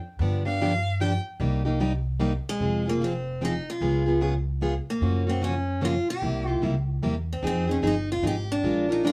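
Light reverb gives this short excerpt of acoustic string swing an intimate, up-front sound, with a swinging, bittersweet mood in a lilting three-beat metre. A picked, plugged-in steel-string acoustic guitar with a boxy concert tone carries the accompaniment from the first moments, together with a woody, thumpy upright bass with dark gut strings plucked pizzicato. In the opening section a single bowed violin plays a brief, expressive solo line between 0.5 and 1.2 seconds, its warm tone shaped by vibrato and portamento. From 2.5 seconds a bright, parlour-sized steel-string guitar with fresh strings takes the picked melody, set in plate reverb. The harmony moves through a minor-key swing progression of seventh and major-seventh chords, ending on Fm7.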